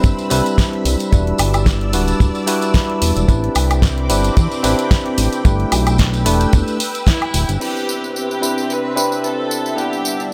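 A lightly swung sixteenth-note groove in four drives this cosmic, sleek nu-disco cut, built on a dry, tight kick set up front and an electronic house kit of punchy snare, hi-hat, crash, woodblock and its own tambourine, with a separate vintage, band-limited tambourine tucked in the background. A fat, saturated analog bass mixes sawtooth, square and sine tones with a filter sweep and fast attack, sitting prominently under the harmony until the kick drops out at 7.2 seconds and the bass and background tambourine follow at 7.6 seconds. Above it, a bell-like, bright tine electric piano plays clean, direct accompaniment through lush chorus, delay and sidechain pumping. A thick unison pad with a sub octave, slow attack and long release holds sustained chords through chorus, phaser and the same pumping, moving through Cmaj7, Em7, Am11 and G6 before returning to Cmaj7. At 7.1 seconds a band accent lands as an intimate chamber violin section enters with a soft-attack bowed melody, played sul tasto with light vibrato, carrying the excerpt to its end.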